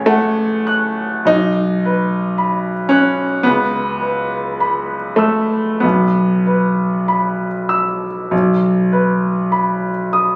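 A concert grand piano opens alone on an F#m/A chord, its tone warm and smooth with a deep bass and a vintage character, placed up front in the sound. This is a romantic classical nocturne for solo piano, slow and in 4/4, played with a free rubato feel that gives it a nostalgic, serene mood. The harmony moves from B to C#m7 at 3.5 seconds and then to Bsus4 at 5.8 seconds before the chords fall away at 8.3 seconds. The piano covers a broad span from A1 up to F#6. A moderate recital hall reverb surrounds the instrument, and the sound of a phone recording made in the room adds club reverb and compression. Lasting about 10.4 seconds, the passage is cut from a longer piece.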